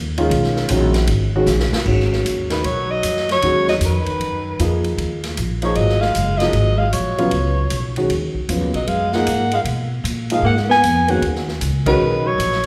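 A swinging 4/4 pulse at 154 BPM drives this intense, searching modal jazz excerpt in G# dorian, built over a G#m11 chord. Pizzicato upright bass with a woody, up-front tone opens the track, joined by a warm upright piano and a big-band drum kit of punchy kick, medium-tuned snare, hi-hat, ride and crash cymbals, which plays a fill at 1.5 seconds. At 2.5 seconds a breathy soprano saxophone takes the melody with mellow vibrato, a soft attack and a whispered, intimate quality, sounding up front yet roomy. Beneath it, a clear alto saxophone carries a second line in a low register, using subtone and scooped notes. The band lands an accent at 11.8 seconds, and the ensemble sits in a wet recital-hall reverberation.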